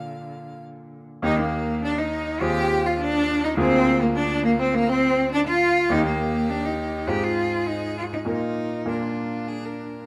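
In a flexible, rubato 4/4 at 102 BPM, this lively, cheerful classical-period movement for piano trio in E-flat major moves along briskly, cut from a longer piece. A single bowed violin carries the melody with a clear, smooth vibrato tone, while a bowed cello sits up front with an even second line. A bright, brilliant grand piano supplies open accompaniment, all heard through close, detailed microphones and a light reverb.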